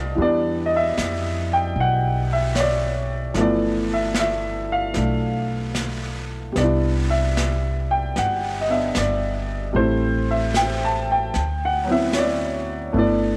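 A clear, open upright piano sits up front in this intimate, late-night jazz ballad excerpt at 75 BPM in G major, alongside a thumpy, pizzicato upright bass and a brushed drum kit on snare and hi-hat in a small room, moving through Em7, G13, Cmaj9, Am7 and D13 with a gentle swing.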